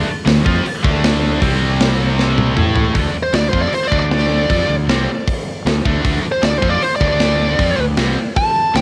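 Driving and menacing, this hard rock passage from a longer piece opens on a brilliant, double-tracked riff from two picked distorted electric guitars, one of them high-gain and set in the background until 3.0 seconds, over a round, punchy fuzz bass played with the fingers. A tight metal drum kit, gritty and up front with a saturated cassette-tape colour, enters at 0.3 seconds and plays a fill into the second section. There a dark, bluesy overdriven lead guitar takes a solo with tape echo from 3.2 seconds, all within the light reverb and small-room feel of a home cassette recording.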